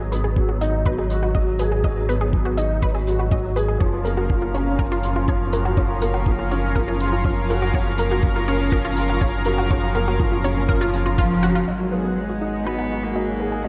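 A muffled, thumpy electronic kick and warm brushed hi-hat set a straight 4/4 pulse at 122 BPM, beneath a deep, round analog bass that pumps with the sidechain in this hypnotic, cinematic piano-and-strings electronica piece in G# dorian. A felt-muted upright piano plays an intimate, mellow riff through chorus and analog delay alongside a detuned analog pluck tracing arpeggios, and a thick, warbling unison pad joins at 3.8 seconds as the chords move from G#m7 to F#maj7. A pure, floating cello melody enters up front at 11.2 seconds, and from 11.7 seconds a filter sweep shapes the pluck arpeggios, all bathed in a dreamy hall reverb.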